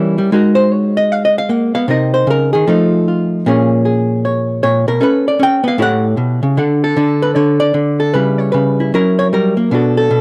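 A miked and amplified archtop guitar carries this brief solo jazz fragment on its own, its dark, clean, hollow-body tone sitting up front as it spans A2 to G5. The mood is playful, set at a brisk 153 BPM in 4/4 with a swung eighth-note feel, and the piece is tuned slightly under standard pitch at A4 = 439 Hz. The opening passage, a picked solo line, moves through restless harmony from G#7sus2 through Cm7, F7, A#m7, Bm9b5 and A9 before settling into D major at 6.6 seconds. From there the second passage steps through D, C#m7b5 and F#7b9 until the cut at 10.2 seconds, an excerpt taken from a longer piece. The sound is a dry, close, 1970s-style studio recording touched with light reverb.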